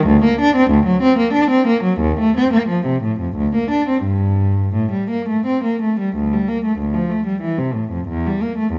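This is a classical, baroque-style suite movement for unaccompanied cello in G minor, a brief excerpt cut from a longer piece. It moves in a flowing, grave 3/4 at roughly 84-97 BPM, played with an elastic rubato. A single bowed cello carries everything from 0.0 to 8.8 s, ranging from D2 up to D4, with a soft attack, expressive vibrato and gliding portamento between notes. The instrument sits up front in a moderate recital hall reverb of about 1.3 s, and the overall production leans dark and warm. The opening idea returns at 6.2 s, restating its material before the passage breaks off.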